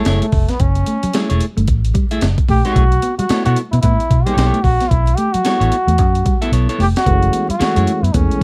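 Funky and gritty, this short swung funk cut rides a compressed, pitched-up breakbeat kit up front with a thumpy kick and medium-tuned snare, while a foam-muted, round fingered bass anchors the low end and a clean, picked electric guitar adds twangy accompaniment. A clear, vintage-toned trombone carries the jazz-style melody up front, over a dark, fingered second guitar riff sitting in the background with spring reverb. The chords move from F#m9 to B9sus4 at 2.8 seconds, a drum fill lands at 6.5 seconds, and a mellow tonewheel organ with key click and slow rotary speaker enters with stabs at 7.1 seconds, all within a dusky production marked by vinyl crackle.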